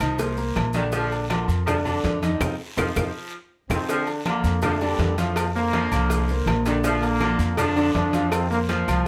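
Salsa at 162 BPM in Bb major, this short, joyful and danceable passage is cut from a longer piece. An up-front pizzicato upright bass with a dark, growly, thumpy tone anchors the groove. It sits beside a concert grand piano that sounds intimate and polished, with audible action noise and long sustain. A vibrato-laden, vintage saxophone section carries an edgy second line. Behind them, a bed of percussion keeps the pulse: ringing metal agogo bells and timbales, woody claves, thick-skinned low-tuned congas, a round low cowbell, a raspy guiro and grainy, saturated maracas. A band accent from 2.4 to 3.9 seconds, joined by a drum fill from 2.8 seconds, sets up the entry of a brilliant, tight, close-miked trombone section, which takes the melody from 3.7 seconds over moderate studio reverb.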